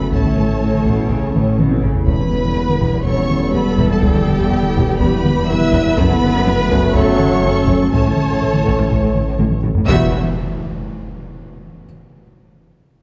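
Hybrid orchestral and electronic film score in E dorian at 123 BPM, brooding and vast, where lush vibrato violins carry a focused melody over a soft-attack second violin line, intense violas, background cellos and a very quiet double bass section, with dark distant French horns, mellow trombones and a warbling, nostalgic tape-like pad with chorus holding sustained chords, a rumbling detuned saw bass and a very quiet felt-muted upright piano with audible action noise beneath, background taiko fills at 1.6 and 9.4 seconds, and an up-front electronic impact at 10.0 seconds landing on Emadd9, all in a dark, wet scoring-stage reverb.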